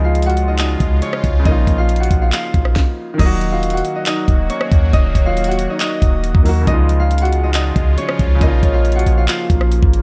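A half-time trap groove of knocking kick, sharp snare, metallic hats, handclaps and rim clicks with gritty 12-bit sampler texture comes in at 0.2 seconds over a deep, boomy 808-style bass, carrying a melancholic, eerie hip hop excerpt in which a fingerpicked, ringing Celtic harp leads the melody above a polished concert grand piano in the background and a bright, evolving sawtooth pad with chorus, while a breathy, flute-like synth lead with vibrato, chorus and analog delay adds a soft second line from 5.2 to 9.2 seconds, all in a dry, close sound.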